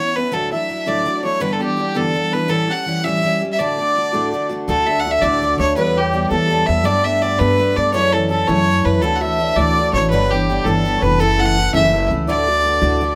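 A clear, bowed fiddle with light vibrato carries the melody up front in this rollicking, cheerful Celtic jig in 6/8, cut from a longer piece, with a bright, full-bodied picked steel-string acoustic guitar beside it and a reedy accordion murmuring a very quiet second line. At 4.7 seconds the tune begins again as a shimmering hammered dulcimer rings in the background on a second line and a woody, thumpy pizzicato upright bass adds a dark low end. Light reverb gives the ensemble a gentle sense of room.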